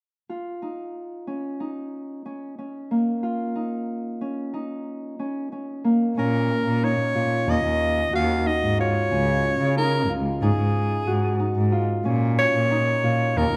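Set in a lopsided 9/8 with a straight feel, this restless, pensive piece of contemporary chamber music opens with an acoustic Celtic harp, thumb-plucked and ringing, playing arpeggios up front. At 6.2 seconds a clear soprano saxophone enters with a jazz-style solo melody, full of vibrato, subtone and scooped notes, while a single bowed cello carries the bass with a smooth, nasal, boxy tone. A moderate recital hall reverb and a dark production frame the trio.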